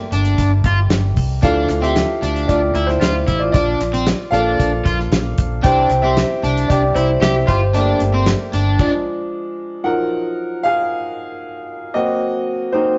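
Driving and earnest, this piano-driven pop excerpt puts a woody, brilliant upright piano up front over a crunchy double-tracked guitar riff, growly fingered bass, a dry 70s drum kit with a fat snare and very quiet crisp handclaps, all in a rough stone-walled rehearsal-room sound, until the band stops by 8.9 s and the piano carries on alone to 13.0 s.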